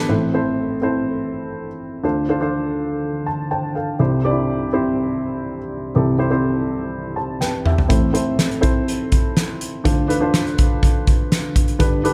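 A dark, woody, slightly detuned upright piano sits up front in this uplifting, anthemic piano-driven pop excerpt at 123 BPM in 4/4, moving through Am, Dm7 and C with a fill at 3.0 seconds before a loose indie drum kit with a fat snare, boomy kick and pumping room sound enters with its own fill at 7.4 seconds, all set in a small room with moderate plate reverb.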